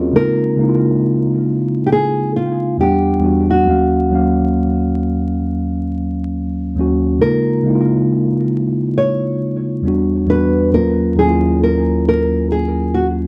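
A clean, mellow tine electric piano heard through its built-in speakers opens this cosy, dark hip hop fragment in Db major at a slow, swung 68 BPM, cycling through Db6, Em9 and Ebm9 chords, while from 0.2 seconds a small, thumb-plucked nylon-string guitar with audible finger squeak and analog delay carries the melody up front, all set in a moderate studio reverb with a layer of vinyl crackle.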